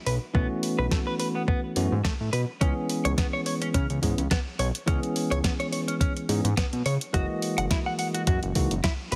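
A fat, sawtooth analog bass sits up front with a filter sweep, anchoring this sensual, sleek nu-disco excerpt over a thumpy, tape-warm electronic kick and a layered house kit of punchy snare and bright hi-hats, all with a light swing on the sixteenths. A clean, direct-recorded electric guitar picks a riff through lush chorus, vintage 12-bit sampler grit, a low-pass filter and delay, while a bell-like tine electric piano enters at 0.3 seconds with its own delay as the harmony moves from B9sus4 to C#m7 and then F#13. The whole mix carries light reverb and a heavily compressed, radio-like sound.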